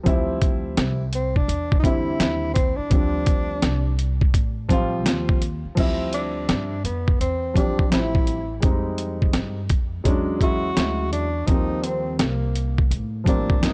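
Smoky and nocturnal, this swung jazz-hop cut opens on a dark, mellow grand piano and a woody pizzicato upright bass warmed by tube saturation, while a thumpy, up-front sampler-style drum kit carries 12-bit grit on kick, snare, hi-hat and crash. A breathy, whispered tenor saxophone with subtone, vibrato and scooped notes enters at 1.1 s through tape echo and takes an intimate solo from 5.8 s as the harmony moves from Dm11 through Fm9 and E13 to Eb69. The small room and cassette-tape recording keep the sound dry and gritty.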